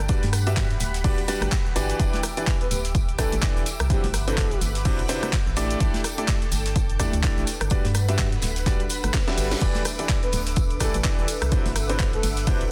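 A silky analog string pad and a hollow, organ-like FM bass open this energetic, soulful piano house excerpt at 126 BPM in E minor, both pumping against the sidechain. They are joined at once by a bright concert grand piano riff with dub echo and a punchy electronic kick that sits up front, while a garage kit adds a cracking, softly clipped snare, bright hats, handclaps, rim clicks, cabasa, ride and crash over a swung 16th-note groove. Further back, close and dry tambourine and congas and a very quiet, airy brush kit fill in the percussion. A breathy, flute-like synth lead with chorus and dub echo drifts in from 2.6 to 4.6 seconds and again near the end, and a warbling, nostalgic tape-like pad slips underneath from 4.6 seconds. A faint reverse cymbal and a drum fill around 9 seconds lead into the Em7 of a progression cycling through Gmaj7, Em7, Cmaj9#11 and A7sus4, all within a dense, heavily limited modern mix with light studio reverb.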